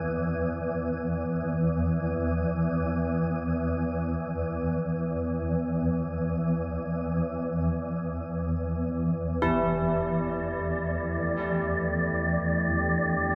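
A swarming, detuned drone sits up front from the start alongside bronze carillon bells ringing out arpeggios through a diffuse ambient delay, all washed in a huge, cavernous reverb that gives this ominous dark ambient fragment its weight. A huge, dark impact thuds in the background at 9.4 seconds, after which a breathy, wind-like tuned noise texture rises up front. From 10.8 seconds a deep, warbling pad with chorus adds moody sustained chords.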